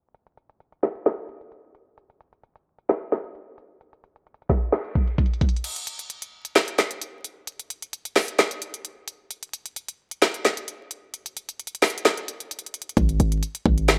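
Draped in a digital ambience of vinyl crackle and low-pass filtering that opens on a filter sweep, this melancholic, hard-hitting half-time trap cut from a longer hip hop piece at 131 BPM rides an up-front electronic kit of knocking kick, woody snare, crisp hi-hats, handclaps and crash cymbal, whose kick drops away from 5.6 to 13.0 seconds before a punchy, heavy, decaying sine 808-style bass with a noise layer and a fast attack lands on G#1 at 13.0 seconds.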